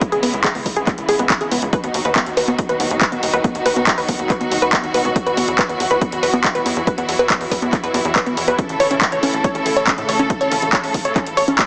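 A straight pulse drives this euphoric, emotional uplifting trance excerpt, with an overdriven, punchy electronic kick and an up-front analog drum machine supplying handclaps, snare and pumping hi-hats, each with a short room around it. A tight, nasal sequencer bass and a lush, detuned unison pluck playing arpeggios with 12-bit grit and tape echo both pump against the beat. A rich, smooth studio string section holds bowed, vibrato-laden chords through a low-pass filter, all inside a lush hall and squeezed into a heavily compressed, small-speaker radio sound.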